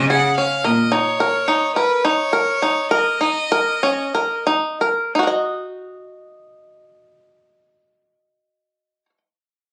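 Set in a straight, uneven 7/8 pulse, this fragment of contemporary chamber music feels hypnotic and pensive, and it slows through its first half before settling into a new section. A twangy, fingerpicked bluegrass banjo spins percussive arpeggios up front and carries on to 9.2 seconds. A bowed cello adds a biting, nasal bass with vibrato, airy and intense at close range, but it drops out at 0.8 seconds. A solo violin sings the melody in an earthy, bright voice with light vibrato and breathy bowing until 4.4 seconds, leaving the banjo alone afterward. Captured on a phone in a club, the sound carries the room's ambience and a touch of reverb.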